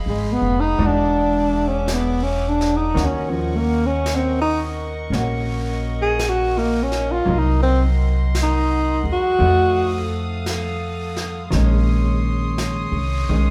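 A mellow, up-front tenor saxophone carries the melody from 0.1 to 10.1 seconds, its subtone, vibrato and scooped notes setting a smoky, melancholic tone in this slow jazz ballad at 56 BPM with a gentle swing. Beneath it, a woody, growly pizzicato upright bass sits close, a dark, clean hollow-body electric guitar offers picked chords, and a distant chamber string section floats soft-attack bowed harmonies through changes such as Fm7b5, Ebm7 and F7b9. Brushed snare and hi-hat slip in at 0.8 seconds, and the whole passage, cut from a longer piece, rests in the moderate reverb of a recital hall.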